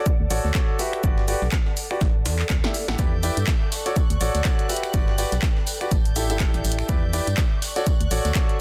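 Piano house at 123 BPM with a swung 16th feel, energetic and soulful, built on a clear, intimate baby grand riff with audible action noise, delay and sidechain pumping over a cycle of Dmaj7, Gmaj7, A7sus4 and Em7 chords. An up-front, punchy electronic kick and a hollow, organ-like FM bass drive the groove. A punchy analog drum machine with snaps, claps, hats and snare, a gritty, pitched-up breakbeat kit in the background and a very quiet ethereal pad fill out the groove. After a drum fill at 2.6 seconds, a dark, sul tasto string section and a small-room tambourine enter at 3.0 seconds, all within a dense, heavily limited modern master.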